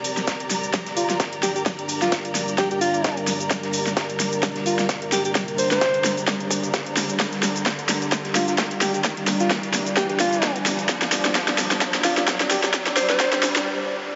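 A swung 130 BPM bass house groove in G minor drives this gritty, aggressive build-up, with a punchy overdriven electronic kick and a big-room dance kit's huge, up-front snare and hats over a very quiet, tape-warm breakbeat sampler kit and a grainy cabasa. A breathy, close-miked alto saxophone with vibrato plays a jazz-style solo through tape echo from 1.0 seconds, while a deep, warbling sawtooth pad with 12-bit grit and a lush bowed string section pump beneath it, and an electronic riser climbs in the background from 2.6 seconds. The whole mix is dreamy and soaked in a huge reverb, and it runs through a drum fill before a brief break at 13.7 seconds.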